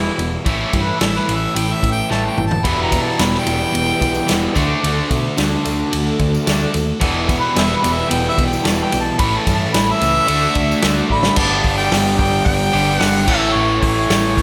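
A roomy harmonica solo with light vibrato and scooped notes leads this gritty, swaggering classic rock excerpt, riding over three overdriven guitars (one biting, one bright semi-hollow, and a sludgy double-tracked one joining at 2.6 seconds), a round hollow-body bass, a very quiet piping organ on a fast rotary speaker, a jingly tambourine and a punchy, up-front vintage drum kit whose fills mark 2.1 and 11.1 seconds, all set in a lush hall for a big arena sound.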